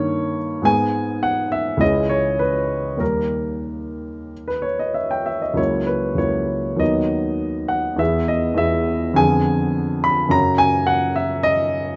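Stormy and brooding, this romantic character piece for solo piano is a 12-second passage taken from a longer work. It moves in 4/4 at roughly 90 to 111 BPM, with a rubato feel that lets the pulse stretch and give. The baby grand has a warm, natural tone with short sustain, sitting up front and ranging from C#2 to Cb6. The harmony opens on D#7/G and turns to G#m, C#m and D#, then passes through F#7/C#, B/D# and E before an Fdim7 at 9.2 seconds and a bare F#5 at 10.3 seconds. Close, detailed microphones capture the instrument with only a light touch of reverb around it.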